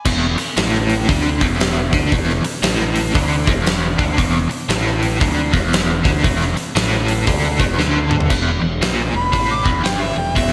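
A big arena sound wrapped in a lush hall reverb gives this gritty blues rock and southern rock excerpt a swaggering weight, with a swung eighth-note feel in 4/4. Up front, a biting, double-tracked electric guitar plays a bright, overdriven riff in its low register, colored by tremolo and slapback echo. Beneath it, a growling picked electric bass with overdrive and a direct-and-amped character anchors the low end. An acoustic rock drum kit, punchy in the kick and mid-forward with a rolled-off top, drives the groove on crash, hi-hat, snare and toms, and a drum fill from 7.8 to 8.3 seconds pushes into a new section. At 9.2 seconds a harmonica enters for a jazz-style solo, its tone warm with vibrato, scooped notes, overdrive and digital delay, before the clip cuts off at 10.5 seconds.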